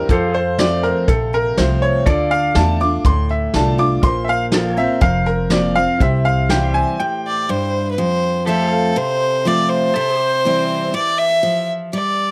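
Heartfelt and easygoing, this honky-tonk and classic country excerpt in F major moves at 122 BPM in a straight 4/4. It opens with a brilliant, up-front upright piano solo over a brushed drum kit with a fat snare, a thumpy pizzicato upright bass, a full-bodied picked dreadnought acoustic guitar, a natural-sounding grand piano in the background and twangy pedal steel chords played with fingerpicks. The drums and bass stop just before a break at 7.0 seconds, and from 7.3 seconds a clear, nasal bowed violin with light vibrato and slapback echo carries the melody over the guitar and pedal steel, all in a dry sound with little reverb.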